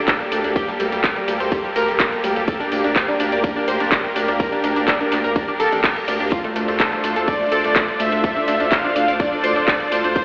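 Progressive house at 125 BPM in a straight 4/4, this short cut from a longer piece feels expansive and driving. A lush, detuned supersaw pad holds sustained chords up front with a slow attack and long release, moving from Gmadd9/D to Dm7 at 6.3 seconds, while a round analog pluck spins bright arpeggios through subtle chorus and tape echo, both breathing with sidechain pumping. Underneath, a deep, saturated sine sub bass sits low in the mix and pumps too, and a punchy, layered electronic kick drives from the front. A house kit of handclaps, hi-hat, ride cymbal and tambourine adds a tape-warm, small-room texture, its hats, percussion and cymbals also pumping. A very quiet reverse cymbal sounds between 5.6 and 6.3 seconds, and at 7.3 seconds a smooth, full-bodied soft supersaw melody enters up front, evolving in tone. The whole track carries a moderate stage reverb but comes across as if played on a big sound system in a bare stone room and heard through a telephone.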